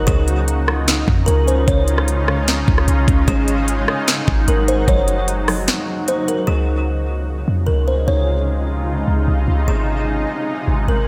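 Atmospheric cloud-rap in a dreamy, blissful mood, this hip hop excerpt moves at 150 BPM in a half-time feel in Db major, with chords drifting from Dbadd9 through Ab7 and Gb6 to Dbmaj9. A woody, hollow kalimba carries the melody with short thumbnail plucks and a diffuse ambient delay, while a cloudy, evolving granular pad sustains blurred chords beneath it, treated with built-in reverb, analog chorus and sidechain pumping. In the background, a thumb-plucked acoustic concert harp rings out arpeggios, also through a diffuse ambient delay, until it stops at 8.8 seconds. Up front, a clean, sine-like 808-style bass booms deep and dark with a fast attack and decay, and a smooth R&B drum kit brings a knocking kick, sharp snare, crisp hats and rim clicks. The kick drops out at 5.7 seconds and the drums end at 6.4 seconds, leaving the second half to float in a lush hall reverb that soaks the whole mix in haze.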